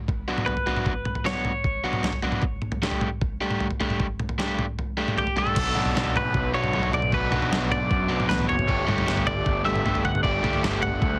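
Straight 4/4 drums at 154 BPM open this bittersweet, cool indie rock clip in B minor with a gritty, thumpy sampler-style kit up front, joined by a bright overdriven guitar riff and a twangy, clean twelve-string melody with tape echo, and after the kick and snare drop out from 4.8 to 5.6 seconds, a fuzz-driven punchy bass and a hollow-bodied overdriven semi-hollow guitar with subtle chorus in the background enter at 5.6 seconds, all under light reverb and a heavily compressed radio sound.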